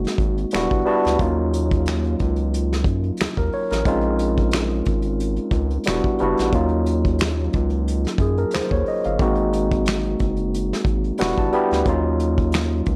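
A barky, overdriven tine electric piano played through a combo amp carries this introspective, late-night neo-soul R&B excerpt in Eb dorian at 90 BPM, sitting up front with gritty fills at 0.2 and 10.9 seconds over chords moving between Ab9, Em9, Ebm9 and Bbm11, while a round, deep analog bass with a wave-folded, evolving tone and a dark, smooth brush kit of finger snaps, hi-hat, tight kick and medium-tuned snare play throughout under light reverb.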